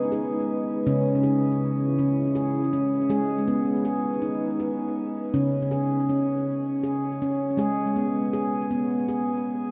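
Gentle and meditative, this short passage of world-flavored tuned percussion moves at a slow 54 BPM in a straight 6/8, set in C# minor. A stainless-steel handpan plays ringing arpeggios from 0.0 to 9.7 seconds, its sharp finger strokes captured close and full, sitting up front with delay and shimmer reverb trailing behind. Beneath it, a deep, moody ambient pad holds sustained chords until 5.3 seconds, its detuned sawtooth and sine layers with a sub octave giving a warbling, vintage character, softened by a slow attack, chorus and shimmer reverb. The harmony drifts between G#m and C#m before settling on a bare C#5 as the handpan carries on alone, then returns to G#m. A vast cathedral reverb surrounds the performance, lending the whole piece an echoing, spacious stillness.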